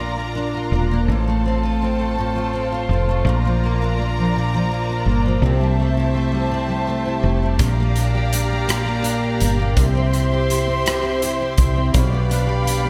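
A six-eight pop ballad at a slow 55 BPM in 6/8, this romantic, heartfelt excerpt moves through a gentle chord sequence opening on Bb and passing through F/A, C6 and C before resting on G7/B. A double-tracked, picked steel-string acoustic guitar sits up front with a full-bodied jumbo tone, its finger squeaks audible. Beneath it, a woody fretless electric bass, dark, round and direct, anchors the low end, while a rich studio string section holds sustained, bowed chords with focused vibrato high above. At 7.6 seconds a modern studio drum kit enters with hi-hat, rim click and a punchy kick, its pumping room sound filling the final stretch. A lush hall reverb gives the whole piece a big arena sound.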